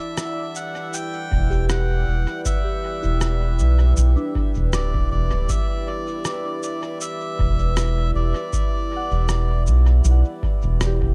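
A swung, unhurried 4/4 groove carries this meditative, hazy ambient dub excerpt, cut from a longer piece and resting on a single D chord throughout. A muffled, tape-softened electronic rim click and shaker starts at 0.2 seconds, sending dub echoes into the mix, and at 1.3 seconds a deep, overdriven analog kick arrives alongside a round, up-front analog bass that sits low and dark under everything else. A moody pad of detuned, sustained chords, thickened by chorus, its own reverb and a gritty vintage sampler texture, fills the space from the start. Behind it, a soft, warbling FM bell traces gentle arpeggios through chorus, phaser and analog delay, set back in the background. A reedy, breathy melodica sings the melody with dub echo trailing its phrases until it stops at 9.6 seconds, in an echo-heavy mix that otherwise stays fairly dry.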